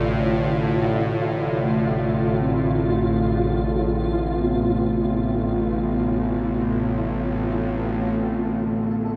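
A string-like, bowed-sounding drone sits up front in this dark ambient fragment, low in register and tense, with a nasal, bright edge, gentle vibrato and its own reverb. Around it, a very quiet analog pad holds sustained chords in a deep, moody shade, its detuned tone thickened by chorus. A quartz singing bowl traces meditative arpeggios in a close, dry and pure voice, its ringing tones slowly beating and carried off by a diffuse ambient delay. Higher up, a flickering, grainy texture adds a mellow granular shimmer. Every part sounds from the start to 9.2 seconds in free time, moving from a Dm7/A chord to an A5 at 8.2 seconds. The whole fragment is bathed in a huge, echoing reverb that places it in a vast space and deepens its desolate, ominous mood.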